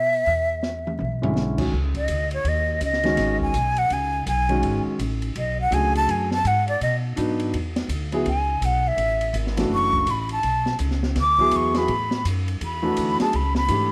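Swinging in 4/4, this intense, searching modal jazz piece opens with the breathy metal flute, a short drum fill from the dark-cymbaled kit and woody pizzicato upright bass, with the intimate grand piano and its audible action noise joining at 1.2 seconds. From 1.7 seconds the flute, up front with vibrato and a soft attack, takes an unsteady solo over suspended chords. Light reverb and vinyl crackle colour the sound.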